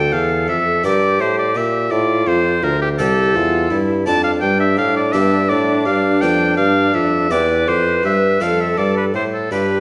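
A baroque-style classical sonata movement with continuo, cut from a longer piece, unfolds in a serene, flowing 6/8 at 56 dotted-quarter beats per minute in F major, tuned slightly below modern pitch. An airy, wooden tenor recorder with tongued chiff and vibrato carries the melody while a bright, close-miked oboe sings a second line up front, over a plucked, brilliant Flemish-style harpsichord with octave strings and a dark, smooth-topped bassoon on the bass. All four play throughout the 9.8 seconds in a wet recital hall reverb, moving through chords from Dm and Gm to F, G7/F and C/E before settling on Dm7/F.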